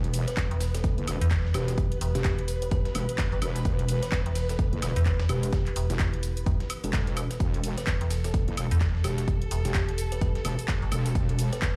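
A large studio reverb and the character of a big sound system in a bare room give this gritty, bouncy bass house excerpt a roomy, booming digital ambience. It moves at 128 BPM in 4/4 with a 59% swing on the sixteenths, resting on an E5 chord throughout. Up front, a heavy, detuned wobble bass with chorus, overdrive and sidechain pumping sounds from the start, a punchy, tape-warm electronic kick joins at 0.4 seconds, and a metallic FM bass with overdrive adds decaying, digital tones between E1 and E2. A layered house drum kit supplies handclaps, hi-hat, shaker and woodblock, and a compressed sampler-style soul kit sits in the background with high-pass filtered hats and a medium-tuned snare. Above them, a woody, hollow kalimba rings in the background through tape echo, and a dark chamber string section holds bowed, vibrato-laden chords with a soft attack and a smooth top, also pumping against the sidechain.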